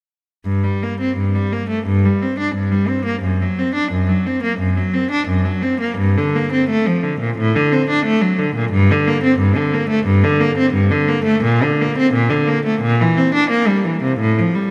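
A single bowed cello carries this grave, flowing baroque-style suite movement, heard as a short excerpt cut from a longer piece. The instrument sounds rich and smooth, placed close and up front, with an even tone and vibrato. The line moves in a flexible, rubato four-beat feel, ranging from F#2 up to D4 as one player sustains the solo from 0.4 s to 14.7 s. A shift in harmony arrives at 11.4 s, lending the closing phrases a brighter colour. Around the cello, a church reverb with a 3.3-second decay adds a cavernous, resonant halo.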